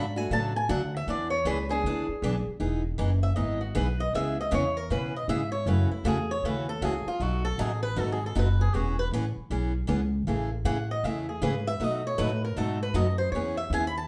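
A swung 4/4 pulse at 157 BPM drives this lively, charming jazz manouche piece in E major, where a picked swing-style acoustic guitar bathed in plate reverb carries a warm, boxy melody, a bright, fresh-stringed parlour steel-string guitar holds the accompaniment and is featured as a solo throughout, and a woody pizzicato upright bass anchors the low end, all heard from further back in a reverberant studio room.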